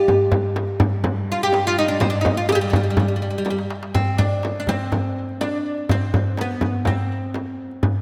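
A bright, woody oud carries the melody up front in this soulful, hypnotic excerpt of Arabic maqam music in G hijaz at 124 BPM, its fretless double strings plucked with a plectrum and trailed by a delay. A distant, reedy chamber cello section in period style holds a bowed drone on G2 until 4.0 seconds. Meanwhile a crisp, metal-shell darbuka played with hard hands and a small, close frame drum keep the pulse, with a drum fill at 3.5 seconds leading into the second section, all within a dreamy mix soaked in lush hall reverb.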